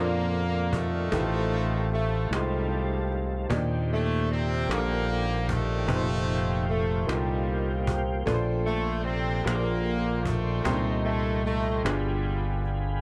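Soulful and jubilant, this slow gospel passage in a straight 6/8 is a short cut from a longer piece. A clear horn section carries the melody in octave doubling with a light vibrato and a touch of tape echo, sitting up front yet with a roomy, pop-style ensemble sound. A smooth, vintage grand piano fills in the accompaniment, while a soft, flute-like tonewheel organ holds sustained chords in the background, colored by chorus vibrato, a slow rotary speaker and audible key click. A growly fingered electric bass sits prominently beneath, and a snappy, band-limited cajon with snares comes in at 0.3 seconds and plays until 12.7 seconds. The harmony moves through rich extended chords such as Bbmaj7, Ebmaj7 and Bb13 before landing on G7b9, all wrapped in a dark, warm production with light small-room reverb.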